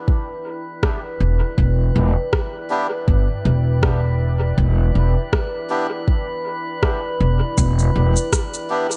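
A digitally reverberant, dusky sound opens this spacious, meditative ambient dub fragment in E minor at 80 BPM, with a deep, detuned pad on a sustained Em7 fading in under a drifting glass-harmonics texture of glassy, chorused overtones. A soft, overdriven electronic kick enters at 0.1 seconds, followed at 0.8 seconds by an overdriven rim click and shaker sent through dub echo, while a woody, thumpy pizzicato upright bass sits up front from 1.2 seconds. From 2.7 seconds a reedy, breathy melodica adds echoing stabs over the lightly swung 4/4 groove.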